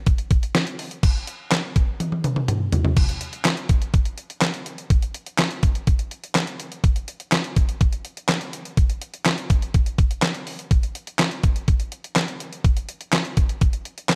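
A straight 4/4 pulse at 124 BPM drives this cool, propulsive pop fragment, carried entirely by a detuned 8-bit digital drum machine that enters at 0.1 s with kick, snare, hi-hat, handclaps, toms and crash cymbal. Its sampler-style electronic kit sits up front, with a thumpy kick, a medium-tuned snare and a tape-warm character, and a drum fill at 2.0 s leads into the longest stretch of the groove. Light reverb gives the whole a faint digital ambience.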